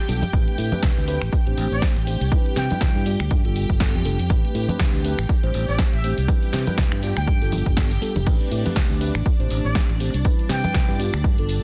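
A dense, heavily limited modern mix with digital ambience frames this funky, groovy filtered disco house excerpt at 121 BPM in A minor, swung on the 16ths over Am11, Cmaj9 and G9, where an up-front punchy electronic kick drives an analog drum machine of punchy snare, finger snaps, sidechain-pumped hi-hat and crash, while bright, close tambourine and congas pump in the background beneath a tube-saturated fingered electric bass, a mellow, clean tine electric piano with phaser and a lush, full-bodied vintage string machine with ensemble chorus, all three pumping too, until a warm trumpet section with vibrato and tape echo enters at 1.7 seconds with a jazz-style melody.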